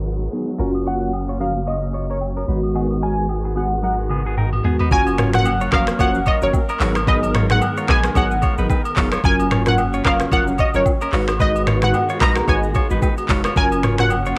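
A swung 16th-note groove at 111 BPM in 4/4 drives this joyful, sunny afrobeats excerpt in F# major, where a deep, punchy sub bass, a bell-like chorused tine electric piano, a twangy clean guitar riff with analog delay, a round, detuned analog pluck melody and veiled con sordino strings in the background move between G#m7 and F#maj7 under a filter sweep, with quiet agogo bells and woodblock, until an up-front afro-pop drum kit with a knocking kick and metallic hats enters with a fill at 3.8 seconds, all wrapped in light reverb and the soft, low-passed haze of a home cassette recording.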